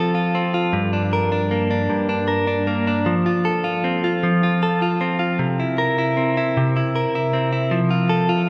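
Pop in a straight 6/8, this short cut from a longer piece carries a tender, heartfelt mood. A single clean electric guitar plays alone from 0.0 to 8.5 seconds, ranging from G2 up to Bb4. Its tone is recorded direct, picked and compressed, with a scooped, up-front character. The harmony moves from F to Gm, back to F, then to C7 before settling on F at 7.7 seconds. A wet church reverb surrounds the recording, giving it the long, airy tail of a church or concert hall.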